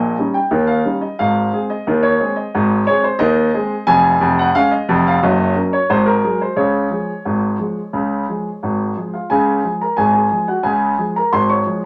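Heard up front in a moderate studio ambience, this short cut from a longer ragtime piece features a solo concert grand piano with a warm, open tone and deep bass, spanning F1 to Db6 in a playful, jaunty 2/4 at 89 BPM with a straight feel, moving from Ab major into Db major at 3.9 s through chords such as Eb7/Bb, Gb and Ab9 before a new section begins at 9.3 s.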